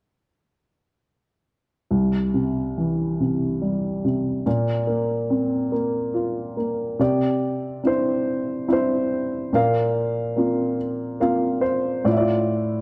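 Folk music in an unhurried triple metre, intimate and nostalgic, played on a solo baby grand piano that carries the melody from 1.9 seconds to 12.8 seconds. The piano's tone is dark and mellow, a little boxy, with short sustain and audible action noise that keeps it close and up front. Its range spans from deep in the bass up into the upper middle register, moving through a simple progression that opens on C, passes through suspended and added-note colours, and settles on F over A. After the opening phrase, a second section begins at 7.0 seconds, and a brief piano fill appears around 10.8 seconds before the final chord. A moderate reverb from a scoring stage surrounds the dark, warm production, giving this short fragment of a longer piece a reflective glow.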